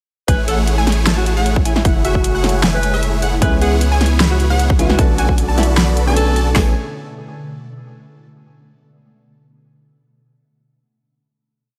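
A half-time, lightly swung 153 BPM beat from two layered, overdriven big-room dance drum kits, with a punchy kick and huge snare, drives this bright, euphoric future bass drop in A major, where a deep sine 808-style bass, detuned open-voiced supersaw chords with phaser and a lush unison pluck doubling them in the background all pump under the sidechain, an ethereal, airy pad enters very quietly at 2.1 s, a mellow, distant alto saxophone plays short answering pop phrases with vibrato through vintage 12-bit grit and dub echo, a soft felt-muted upright piano with audible action noise joins at 3.4 s, and the piece closes on a final Amaj7 chord at 6.6 s.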